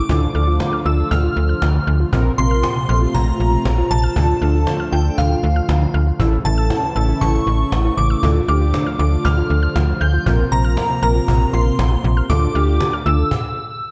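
Cool and nocturnal, this synth-pop excerpt moves at 118 BPM in D minor, where a shimmering, warbling FM bell with an ensemble chorus carries the dreamy melody over a swirling phased analog pad and soft, round plucked arpeggios trailing tape echo in the background. Mellow, brassy synth accompaniment and a snappy, metallic FM bass sitting up front drive the Dm, Bbsus2 and A changes, while a distant cajon with snares rings out in a large room. The dark production carries light reverb, and the band stops at 13.3 seconds, leaving the bell's long release to fade out by 13.9 seconds.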